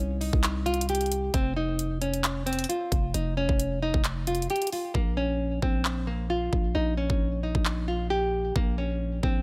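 The recording is dry and close, with the guitar, bass and drums all placed up front in a short cut from a longer melancholic, hard-hitting trap track at 133 BPM in 4/4 with a half-time feel. A dark, fingerpicked nylon-string guitar carries the melody in a classical style, with audible finger squeak and a touch of delay, moving over Cm and Eb7sus2/F. Underneath, a growling 808-style bass with a buzzy, sine-based tone, fast attack and decaying notes holds down the low end. The electronic trap kit adds a knocking kick, handclaps and bright hi-hats from 0.2 seconds. At 4.9 seconds the harmony shifts to Bbm and the hi-hats drop out, leaving the kick, claps, bass and guitar to carry the final stretch.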